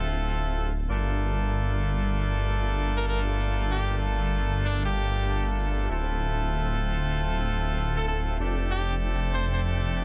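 Glitch hop with a funky, swaggering strut, this short excerpt moves at 96 BPM in 4/4 with a 64% 16th-note swing, set in G dorian. A phased, detuned saw bass sits up front throughout, its swirling, thick tone roughened by tube saturation and carrying a sustained, fast-attack weight down low. A bright horn section punches out stabs across the full ten seconds, its vintage, octave-doubled ensemble sound carrying light vibrato and trailed by delay. At 3.0 seconds a brilliant solo trumpet takes the melody, punchy and forceful with vibrato and its own delay, until 9.6 seconds. The harmony moves from Dm7 to Gm9, back to Dm7 and on to F6, all in a dry space with little reverb and a dense, heavily limited modern master.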